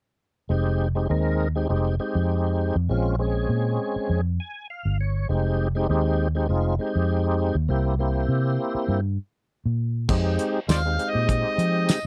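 A lightly overdriven tonewheel organ, turning through a slow rotary speaker with chorus vibrato, opens this mournful, smoky soul blues in F minor alongside a round, foam-muted fingered electric bass, moving at 100 BPM with a gentle sixteenth-note swing. A cloth-damped drum kit with a fat snare, tight kick, dark cymbals and tambourine enters at 10.1 seconds, and a gritty, amplified harmonica follows at 10.7 seconds with scooped notes, tongue slaps and light vibrato in a jazz-style solo. The sound is dry and close, like a 1970s studio session, in a short cut from a longer piece.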